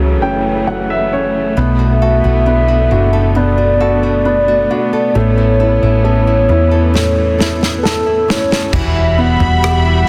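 A small room and light reverb frame this tender, hopeful pop ballad, cut from a longer piece, with a dense, heavily limited modern master. At 67 BPM in a straight 4/4, a hollow, woody synth lead with a soft attack, chorus and tape echo sings the melody over a clear, polished baby grand piano, which opens with a fill over F#m before the harmony moves through Bm7, A and Emadd9. A lush, bowed studio string section holds sustained chords underneath, while a round, punchy hollow-body electric bass sits up front with a dark, amped tone. A bright, fingerpicked nylon-string guitar enters at 1.6 seconds with small arpeggios in the background, touched by tape echo. The natural country drum kit, with its toms, snare, rim click, tight kick and dark crash cymbals, arrives only at 7.0 seconds with a fill that carries the music into a new section at 8.7 seconds.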